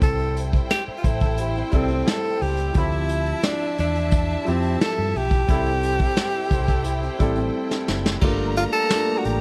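Lush 1970s-style soul at 88 BPM in C mixolydian, this smooth fragment of a longer piece puts a close-miked tenor saxophone with vibrato up front over a rich bowed string section, an open, long-sustaining baby grand piano, a round hollow-body electric bass and a brushed drum kit with dark cymbals and a punchy kick, while a slightly broken-up electric guitar riff sits in the background from 1.0 to 8.2 seconds, a soft-attacked trombone section adds stabs between 2.7 and 5.7 seconds, and a drum fill at 7.5 seconds leads into a Gm9 chord in a dark production with small-room ambience.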